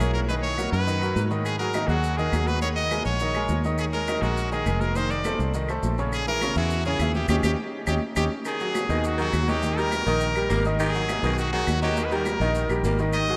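Fiery, passionate salsa, cut from a longer piece, in which a brilliant, punchy trumpet leads with vibrato and scooped notes, touched by slapback echo, over a bright baby grand piano with audible action noise and a round, foam-muted fingered electric bass, all up front. Ringing, high-tuned congas and grainy maracas sit in the background, very quiet woody claves also sound, and the whole band lands a shared accent from 7.3 to 8.5 seconds. At 8.5 seconds a breathy, raspy baritone saxophone enters with a second line, and a vast cathedral reverb gives the sound an echoing depth.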